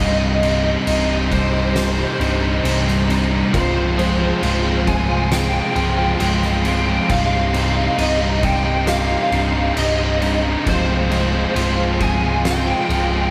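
Post-rock at a slow 67 BPM in C minor, this cathartic, melancholic passage is cut from a longer piece and rocks between Cm and Fm/C under a dreamy mix soaked in a huge ambient reverb. An overdriven slide guitar carries the melody through ensemble chorus and delay, while a twelve-string electric guitar adds clean, compressed arpeggios with delay, and two overdriven guitars, one biting and one hollow-bodied, sit back in the mix playing riffs. A dark, round, punchy picked bass holds up front on a low C, an oversized, low-tuned drum kit with a boomy kick, fat snare and crash enters at 0.4 s in a gritty, pumping stone room, and a very quiet studio string section sustains expressive bowed chords with vibrato and portamento.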